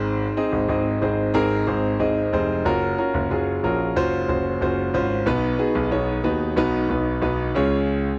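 A straight 4/4 pulse at 92 BPM carries this hopeful, uplifting piano-driven pop fragment, which moves through Ab, Gbmaj7, Cb and Db across about 8 seconds. A woody upright piano plays the accompaniment while a grand piano with long, natural sustain holds down the low bass line, both sitting up front. The sound is dry and close in a 1970s-style studio manner, touched with light reverb.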